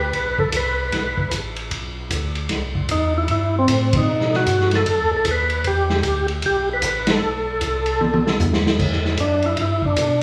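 A soulful, smoky soul jazz organ trio cut from a longer piece swings at 152 BPM in 4/4, moving through chords from E7 and C to B7 and Em7. An overdriven tonewheel organ carries the melody up front, its tone full and gritty with percussive second harmonic attack, slow rotary speaker and chorus vibrato. A second tonewheel organ holds down the bass line with a piping, scooped, clean sound, also turning through a slow rotary speaker with chorus vibrato. A vintage acoustic drum kit sits close, muffled and lo-fi with a rolled-off top, a punchy kick and medium-tuned snare, working across crash, ride, hi-hat and toms. The band hits accents together at 3.9 and 7.0 seconds, and a drum fill from 8.0 seconds leads into a return of the opening section at 8.8 seconds. The trio sounds like it is playing live in one room, wrapped in a wet large studio reverb.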